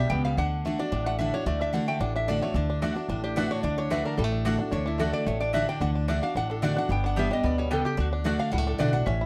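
Lively and rustic, this bluegrass excerpt from a longer piece moves at a brisk 221 BPM in a straight 4/4 feel, centred on D major with a brief turn to G before settling back on D. A lap resonator guitar, played with fingerpicks and slide, carries the melody with a metallic, nasal voice, while a bluegrass banjo shares the lead with a twangy, percussive bite. Up front, a picked steel-string acoustic guitar with fresh strings supplies full-bodied, jumbo-sized accompaniment, and a pizzicato upright bass on gut strings gives a woody, thumpy low end. A round, double-strung mandolin adds picked stabs from 2.8 to 8.9 seconds. Light reverb and a dark production give the short passage an intimate, homespun character.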